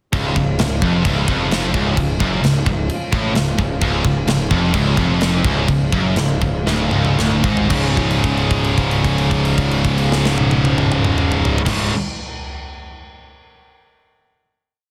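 A dense, heavily limited modern master in a small room ambience gives this complete heavy metal piece a dark, crushing weight in a straight 4/4 feel. Up front, a tight acoustic metal drum kit drives the groove with bright cymbals, a medium-tuned snare and a firm kick that carries soft clipping. Behind it, two scooped, high-gain electric guitars and a thick, double-tracked fuzz guitar play picked single-note riffs, while a growly, overdriven electric bass doubles the riff in driving eighth notes. Very quiet beneath them, a pipe organ's nasal cornet solo stop with tremulant holds sustained chords in a romantic voicing. The riff slows from 3.8 seconds, a drum fill leads into a final chord at 7.7 seconds, and a held note rings until about 11.7 seconds.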